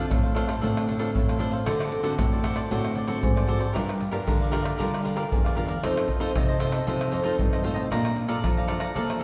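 Set in the lush, reverberant air of a large hall, this sunny, lively samba-choro fragment in D minor moves at 115 BPM, with a crisp picked cavaquinho and a fingerpicked classical nylon-string guitar sharing the accompaniment over a warm thumb-plucked nylon-string bass line, while a close, up-front, hard-handed percussion group of egg shaker, deep surdo, pandeiro and tamborim drives the chords from Dm7 through Gm7 and F7 to Bbmaj7.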